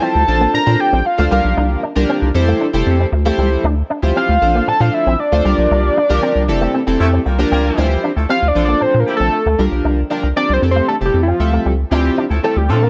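A dry funk groove in D minor at 116 BPM with a slick, late-night mood, built on a rubbery, bouncy square-wave bass sitting up front beneath a glossy chorused polysynth, while a clean, twangy electric guitar with an envelope filter plays a riff in the background. A fat, detuned analog lead with chorus and slapback echo carries the melody over smooth chords such as Bbmaj9, C9sus4, Fmaj7 and Dm11, the band hits an accent from 5.7 seconds, and a distant, mellow horn section adds a second line from 7.0 seconds. At 7.8 seconds the lead moves into a solo that runs to the end of this cut from a longer piece.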